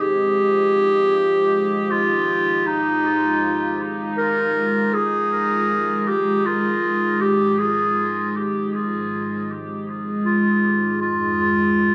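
Meditative and deep, this ambient excerpt in F minor floats in free time, with a clear, distant clarinet carrying the melody between Eb4 and Bb4, its phrases trailed by dub echo. Alongside it, a dark, full-bodied pad of detuned sawtooth and sine layers with a sub octave holds sustained chords from Fm7, moving to Ab/F at 11.0 seconds, its slow attack and long release colored by chorus and its own reverb. A moderate echo chamber reverb places both parts in a studio space.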